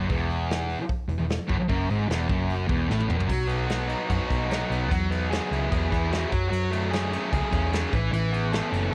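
A straight 4/4 pulse at 150 BPM drives this upbeat, wistful indie rock excerpt, where a thick, bright, double-tracked fuzz guitar riff sits up front over a round, dark hollow-body short-scale picked bass and a soft brush drum kit with dark cymbals and a punchy kick, a drum fill at 2.9 seconds leading into chords moving from B through Eadd9 and F#madd9 to Aadd9, all wrapped in a worn, warbling cassette-tape studio ambience with drifting pitch.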